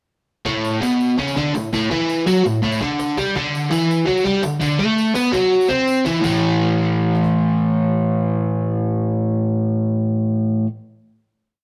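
A crunchy, double-tracked overdriven electric guitar sits up front with a picked octave riff on A and D5 at a fast 166 BPM in 4/4, backed in the background by a woody cajon with faint snares driving a big rock groove and a jingly, close tambourine, before a drum fill at 5.9 seconds leads to a final A5 chord ringing out at 6.2 seconds in a rowdy, raw garage rock piece captured in a rough rehearsal room with moderate stone-room reverb.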